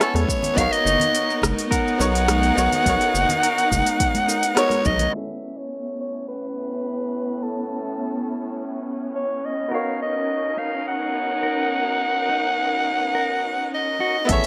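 A raspy soprano saxophone with digital delay carries the melody from the opening of this sunny, smooth sunset chillout piece at 105 BPM in 4/4, over bright grand piano with tape echo, lush bowed strings, clean electric guitar arpeggios set dark in the background, and a deep house kit with metallic hats, an electronic kick, a round analog bass up front and small-room congas and bongos, moving between Amaj9 and Bmaj9 until the rhythm section drops out at 5.1 seconds and a filter sweep washes over the strings, with the guitar returning at 9.7 seconds and the beat reappearing briefly at 14.3 seconds, the whole set in a moderate, lush hall reverb.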